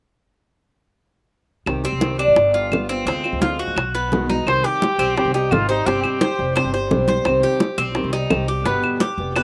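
A dry outdoor recording carries this danceable, sultry slice of Cuban son and guajira at 172 BPM in C harmonic minor, with an up-front tres playing metallic, double-strung arpeggios touched by slapback echo over a dark, boxy fingerpicked parlour guitar and a growly, woody pizzicato upright bass. Round, low-tuned bongos with their own slapback echo and bright, damped congas sit in the background from 1.7 seconds, joined by woody claves. A punchy solo trumpet with vibrato steps up front for a short melody from 4.5 to 6.7 seconds over a shift from C minor to G suspended harmony.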